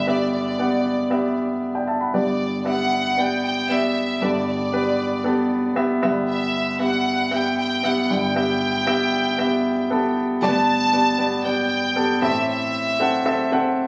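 A straight 4/4 pulse at 116 BPM drives this anthemic pop fragment in G major, tuned to A4 = 442 Hz and cut from a longer piece. A polished, present grand piano sits up front as accompaniment, spanning G1 to B5. A studio violin section carries the melody between D5 and A5, its bowed ensemble tone reedy and gut-stringed in a period style, with light vibrato, a smooth top and a digital delay. The harmony rests on Em/G, moves to G at 10.4 s as a new section begins, and turns to Am at 12.2 s. Light reverb and compression colour the sound, which was recorded on a phone in the room, giving it a warm club ambience.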